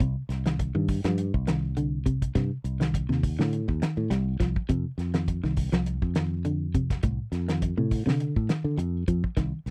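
A 102 BPM groove in 4/4 with a light 16th-note swing drives this funky, hypnotic afrobeat fragment in C dorian, cut from a longer piece and resting on a single C minor chord. A warm soul drum kit anchors it with hi-hat, a fat snare and a tight kick, its sound small-roomed, up front and rolled off at the top. A fingered electric bass sits alongside it, direct, foam-muted and punchy, moving between C2 and D3. An electric guitar at the edge of break-up plays fingered arpeggios between A2 and G3, its dark tone colored by a phaser. All three parts run together for nearly the full 9.7 seconds, captured in a dry, close 1970s-style studio sound with little reverb.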